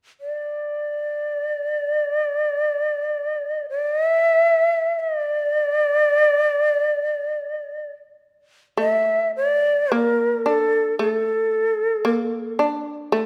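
In free time, this still, meditative piece of Japanese traditional chamber music, cut from a longer work and tuned to A4 = 443 Hz, opens with a breathy, bright, end-blown bamboo shakuhachi carrying the melody from 0.2 seconds, up front with a soft attack and expressive vibrato. At 8.8 seconds a fretless, plectrum-plucked shamisen enters beneath it as a second line, percussive, buzzing and powerful, sounding on until 13.3 seconds after the shakuhachi has finished. A moderate recital-hall reverb surrounds the pair.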